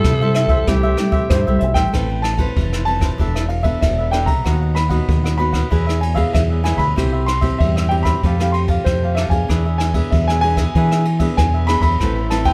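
A bright, up-front fingered electric bass run through an envelope filter anchors this bittersweet, nostalgic fragment of samba and choro, moving at 95 BPM in a straight 4/4 in A minor. Above it, a warm, natural grand piano carries the melody in its upper register. A growling tenor saxophone adds a second line, raspy and breathy with subtone, vibrato and scooped notes, heard only briefly at the opening until 1.6 seconds and again from 12.0 seconds. A crisp, picked cavaquinho and a fingerpicked classical nylon-string guitar fill out the accompaniment. A roomy brush kit with dark cymbals, a boomy kick, hi-hat, ride and rim click keeps time, and light reverb surrounds the whole. After a short opening passage, the harmony shifts at 1.9 seconds into a longer section that moves from Amadd9 through E7sus4, B/D#, E, C and Fadd9 to E7 before settling back on Amadd9.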